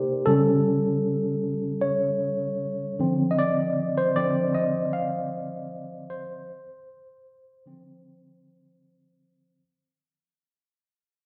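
A worn, slightly out-of-tune tine electric piano carries this brief soul fragment alone. Lightly overdriven and heard through built-in speakers, it sits up front, spanning C#3 to F5. The mood is smooth and silky, with a relaxed 4/4 pulse and a gentle swing on the sixteenths. The harmony moves from A7/C# at 0.3 seconds to Dm7 at 3.0 seconds. A wet, large studio reverb surrounds the playing with the sense of a band in one room, and the whole fragment, cut from a longer piece, fades out across its 9.6 seconds.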